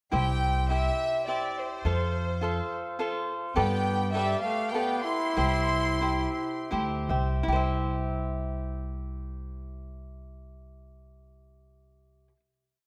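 Festive and proud, this short mariachi piece in 3/4 and C major moves at 76-105 BPM, with a close, earthy violin section carrying a call-like motif over crisp sixteenth-note cavaquinho strumming and woody, thumpy pizzicato upright bass on root and fifth, while a clear, soft-attacked trumpet adds a harmony line mostly in sixths from 3.6 s as the tempo slows toward a held final chord at 7.5 s, all within a moderate concert hall reverb.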